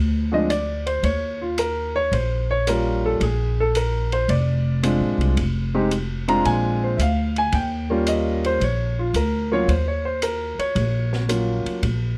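Jazz piano trio swinging at a relaxed 111 BPM in 4/4, a short excerpt cut from a longer piece that moves through chords such as Eb7, Bb7 and Fm. Woody, up-front pizzicato upright bass anchors the low end from the start while a smooth, vintage-toned grand piano carries the melody from 0.3 seconds, sitting close and present. Further back, an acoustic drum kit with dark cymbals, a high-tuned snare and a boomy kick plays hi-hat, ride, snare and kick from 0.5 seconds, all captured with close, detailed microphones and little reverb.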